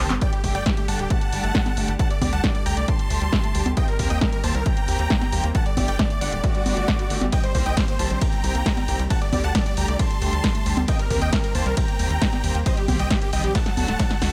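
A huge, euphoric supersaw lead carries the melody with tape echo and sidechain pumping in this driving, bittersweet uplifting trance excerpt at 135 BPM in G harmonic minor, shadowed by a very quiet, phaser-tinged plucky unison lead on a second line. Rich, bowed symphonic strings hold sustained chords, a round analog pluck with chorus and delay runs arpeggios in the background, and a tight sawtooth sequencer bass drives underneath. A dry, punchy analog drum machine with congas, handclaps, hi-hat, ride cymbal and snare, plus an up-front electronic kick, keeps the beat, and drum fills mark 0.0 and 13.6 seconds.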